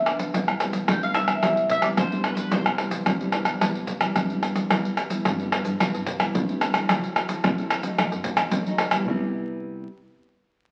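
Samba and choro in C major at 110 BPM, joyful and lively and cut from a longer piece. A fingerpicked classical nylon-string guitar and a hollow, bouncy FM bass, which sits in the background, move through Cmaj7, F#m7b5 and B7, while pandeiro, tamborim, egg shaker and a deep surdo play up front in a small acoustic room. A round, double-strung picked mandolin carries the melody only from 0.1 to 4.1 seconds, and the recording has wet, large studio reverb and the crackle of a very old 78 rpm record.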